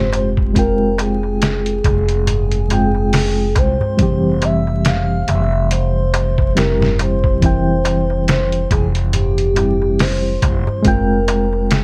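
A dry, close mix under a layer of vinyl crackle sets a smoky, cinematic mood for this slow trip hop cut, moving at 70 BPM in F harmonic minor with a swung 16th feel over Fmadd9 and C/F chords. A mellow, reedy electric piano with tremolo and a filter sweep carries the accompaniment from the start, while a woody pizzicato upright bass on gut strings sits up front, and a pure, breathy sine lead with chorus, phaser, vibrato and tape echo floats a dark, sustained melody above. From 0.1 seconds a compressed, pitched-down, muffled sampler-style kit with a thumpy kick and medium-tuned snare joins in, alongside a crisp metal-shell darbuka played with soft hands in the background.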